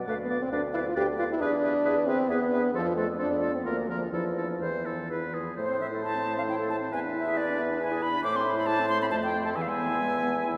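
Drenched in the long, wet reverb of a church or concert hall, this stormy, dramatic stretch cut from a quick classical-period movement for wind quintet in A minor moves in a rubato 3/4 at about 123-139 BPM, with an airy, close-miked concert flute singing the expressive melody over an oboe's light-vibrato second line, an up-front, clear French horn and a warm, smooth clarinet filling the accompaniment, and a dark bassoon holding the bass, the harmony turning from a diminished opening through the dominant to a fresh start on A minor at 5.6 seconds.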